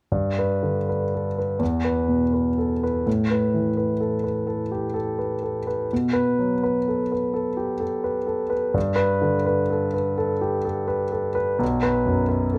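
Dreamy and serene, this brief impressionist classical excerpt finds a solo concert grand piano, intimate and up front with deep bass, long sustain and audible action noise, drifting in rubato 6/8 at 42 BPM in G major through open Gadd9, E5, Asus2 and B5 harmonies under light reverb, returning to Gadd9 at 8.8 seconds before settling on B5 at 11.6 seconds.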